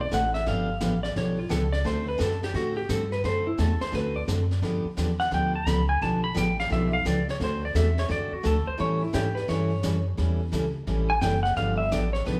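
Playful and down-home, this western swing excerpt rolls along in a lively 4/4 swing with a clean, compressed lap steel guitar carrying the lead as a slide solo up front, its fingered lines marked by volume swells, over dominant-seventh changes moving from G7 to D7 and A7. A woody, thumpy pizzicato upright bass and a bright, full-bodied picked dreadnought acoustic guitar sit close beside it, while a jazz brush kit with a high-tuned snare and hi-hat stays low in the mix. The band plays live together in one room, with a moderate large-studio reverb giving the whole performance a natural sense of space.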